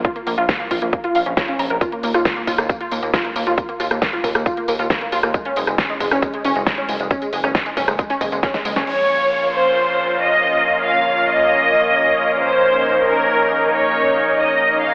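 A warm, vibrato-rich symphonic violin section soars in at 8.9 s over a thick, bright unison pad and a background downlifter in this driving uplifting trance excerpt at 136 BPM in Bb minor, following an opening of detuned sawtooth pluck arpeggios with tape echo, a punchy layered kick, a huge-snare dance kit with tambourine and crash that ends in a fill at 8.4 s, and a gritty, saturated synth bass pumping underneath, the mix drenched in lush hall reverb with a dreamy, telephone-like tone.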